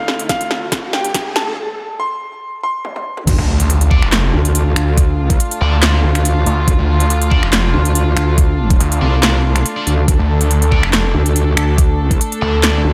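A half-time, lightly swung 4/4 groove drives this heavy, chaotic wobble dubstep passage. A clear, intimate grand piano melody with delay and dark, bowed strings pumping under a filter sweep ride a build-up of background riser, drum fills and a break, carried by a knocking overdriven electronic kick and a punchy big-room kit with crisp hats, snaps, claps, toms and crash. The drop at 3.3 seconds then unleashes an impact, an up-front metallic wobble bass with chorus, a snarling, detuned saw bass, and high-gain guitar stabs set back in the mix.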